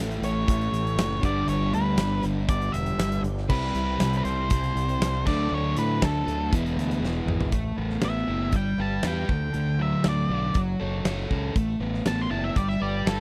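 Sunny and driving, this classic rock excerpt pairs a crunchy overdriven guitar riff with a phaser-tinged semi-hollow guitar in the background, a growling, up-front fingered bass with overdrive, and a huge arena drum kit with a fat snare and punchy kick, while a dark octave-fuzz lead guitar carries the melody over a very quiet tonewheel organ that holds sustained chords through its slow rotary speaker until 7.5 seconds, when a drum fill gives way to the lead guitar solo in a dry, close 1970s-style studio sound.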